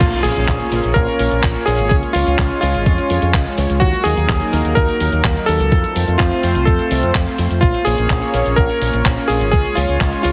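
A steady, straight 4/4 pulse at 126 BPM drives this melodramatic, bittersweet italo disco passage in Bb minor, cut from a longer piece. A thumpy, sampler-style electronic kick drum, tape-tinged and re-recorded in a small room, sits loudest in the mix until 10.1 s. A clean 12-bit digital drum machine adds cabasa, crash cymbal, handclaps and hi-hat. A fingered electric bass runs through an envelope filter for a direct, warm low end. Above it, a bright, cutting electric grand piano carries the melody with a clangy, vintage character, short sustain and tape echo, set up front, while a smooth, detuned analog pad of sawtooth and triangle tones with a sub octave holds mellow, slow-attack chords with long release and chorus through Bbm, Db, Ebm and F. A very quiet electronic impact opens the passage and ends by 1.9 s, and the whole mix carries light digital ambience and a heavily compressed, radio-like sheen.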